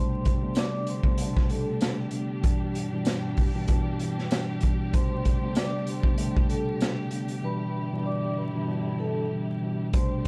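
Dry and crackling with vinyl noise, this gritty, reflective boom-bap hip-hop excerpt in A minor rides a swung 96 BPM groove as a saturated, punchy garage drum kit enters at 0.3 seconds alongside a mellow tine electric piano, a ringing soft-mallet vibraphone melody with analog delay, lush distant bowed strings with vibrato and portamento, and a very quiet jingly tambourine that drops out at 7.0 seconds, just before a break at 7.4 seconds.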